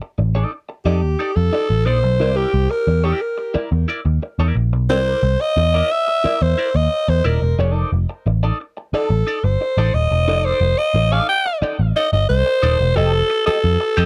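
A growling alto saxophone takes the lead in this energetic, playful funk excerpt, entering at 0.8 seconds with a raspy, gritty jazz-style solo full of scooped notes, subtone and light vibrato, placed up front and close-miked with a touch of tape echo. Underneath, a vintage foam-muted electric bass, picked and amped, sits prominently with a dark, round tone. An electric guitar on the edge of break-up plays accompaniment further back in the mix, its compressed, slightly broken-up sound shaped by wah. The groove moves at 89 BPM in a straight 4/4, cycling through F13 and C9 before landing on F9 as a new section arrives at 13.0 seconds. The dry, close sound recalls a 1970s studio, with little reverb around the players.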